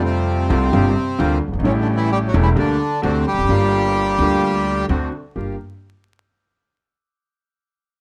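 Sultry and melancholic, this tango is cut from a longer piece. It sits in G minor at 130 BPM in 4/4, with a loose rubato feel. A reedy, dark bandoneon carries the melody up front until 4.9 seconds, while a second bandoneon with a mid-forward tone adds stabs from the background. A warm upright piano with a natural tone and long sustain supplies the accompaniment, and a woody acoustic upright bass, plucked pizzicato on steel strings, holds the low end up front. The harmony moves from Fadd9 through Gm7, A7 and D7 before landing on Gm7 at 5.4 seconds as a new section begins. A moderate club reverb and a layer of vinyl crackle give the sound an intimate, aged character.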